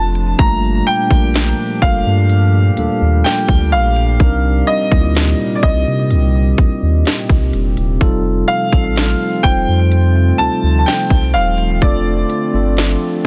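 Up-front trap drums with a hard-clipped kick, sharp snare and crisp hats drive this moody, longing contemporary R&B excerpt, where a clear grand piano carries a delayed melody above a mellow tine electric piano, a deep sine-like sub bass with octave, and a hollow, flute-like pad that pumps softly with chorus in the background, all in a dry, dense and heavily limited mix.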